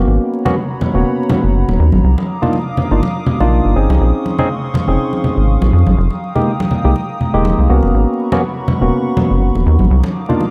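This deep house excerpt has a light reverb and a layer of vinyl crackle, giving a smooth, deep mood at 122 BPM in 4/4 with a gentle 16th-note swing. A rubbery square bass sits up front, dark and bouncy with a resonant, filter-plucked attack, anchoring the low end through most of the clip. A barky tine electric piano plays stabs, lightly overdriven through a combo amp and trailed by delay, while a hollow, flute-like pad with chorus holds airy sustained chords high above. Congas enter at 0.5 seconds with soft hands and a ringing, medium-tuned tone, sitting up front yet distant, carrying the air of a large room. The harmony moves through minor eleventh chords, shifting from Abm11 to Cm11, Bbm11 and Fm11 before circling back, and the clip is cut from a longer piece.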